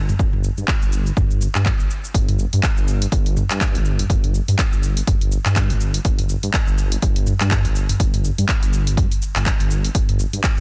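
Afro house at 123 BPM in 4/4, with a 57% swing on the sixteenths giving the groove a loping, hypnotic lilt and a spiritual mood. A dark, detuned saw bass sits up front from the very start, deep and rumbling with a beating sawtooth edge over a sine-like core, its fast attack and sustained notes moving between G1 and G2 while sidechain pumping makes it breathe around the beat. A punchy, layered electronic kick enters at 0.2 seconds with a tape-softened character. The house drum kit, also up front, fills in handclaps, toms, a shaker and hi-hats with a mellow, rounded sheen. The mix is dry with little reverb and a dense, heavily limited modern master, presented as a short cut from a longer piece.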